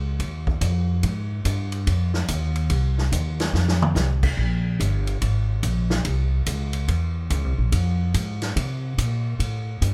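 Swinging and dramatic, this short excerpt from a longer big band swing piece moves at 144 BPM in F minor with a firm swung feel. An up-front pizzicato upright bass, woody, dark and growly, carries the low end from the start, and a distant, roomy drum kit with a boomy kick and medium-tuned snare joins at 0.2 seconds, working across ride, hi-hat, crash and toms. A drum fill at 3.5 seconds stands out, and the dry recording leaves the bass sitting well ahead of the kit.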